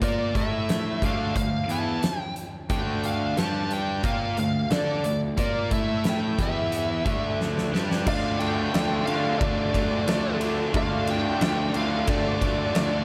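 Classic rock in D minor at 90 BPM, brooding and gritty and cut from a longer piece, where a dark, distorted bluesy lead guitar with slapback echo carries the melody over background riffs from a hollow-body overdriven semi-hollow guitar with its own slapback and a tight distorted guitar, a fuzzy, punchy picked electric bass and a huge arena drum kit up front with a fat snare, punchy kick and pumping room, until a drum fill at 7.4 seconds leads into a new section at 8.1 seconds where a very quiet detuned, jangly honky-tonk upright piano and a double-tracked raw garage guitar join, the whole mix sitting in a moderate scoring-stage reverb with a big arena sound.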